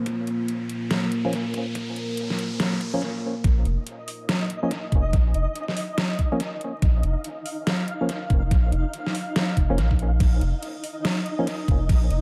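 A round, soft sub bass anchors this heavy, meditative deep dubstep excerpt, arriving up front at the drop at 3.4 seconds, while a knocking electronic kick plays from the very start. Before the drop, a build-up sets a moody, detuned sawtooth pad, dark and chorused with its own reverb, against an electronic riser, while a filter sweep moves over both the pad and a hollow, percussive organ stab that enters at 1.2 seconds. A brief break leads into the drop. The half-time, swung groove comes from the kick and a layered, up-front drum kit of snare, metallic hats and crash cymbal, treated with tape echo. Through the drop the mellow organ stabs carry chorus and dub echo, and from 4.0 seconds a grainy, flickering granular texture with built-in reverb hovers above, all inside an echo-heavy mix with light reverb and a dusting of vinyl crackle.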